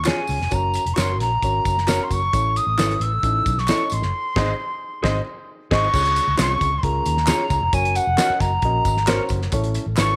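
An airy, crisp-attacked silver concert flute carries the melody over round, foam-muted fingered electric bass, group handclaps with tambourine and egg shaker, a reedy, slightly out-of-tune electric piano, picked stabs from a slightly broken-up guitar through a small old amp, and a cloth-damped drum kit with a fat snare and dark cymbals, all driving this joyful, uptempo 1960s-style soul excerpt at 133 BPM through chords moving from Db to Gb, A and Ab, with a band accent from 4.1 to 5.9 seconds, in a small room with moderate spring reverb.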